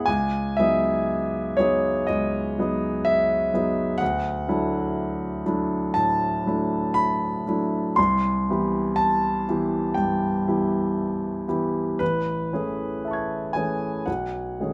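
Impressionist classical solo piano, serene and luminous, with a clear grand piano heard intimately up front, its audible action noise and long sustain ringing through light reverb as rubato phrasing drifts over lush chords from Emaj9/C# through Dadd9, Cmaj7 and Amaj9 to B13 in this brief passage cut from a longer piece.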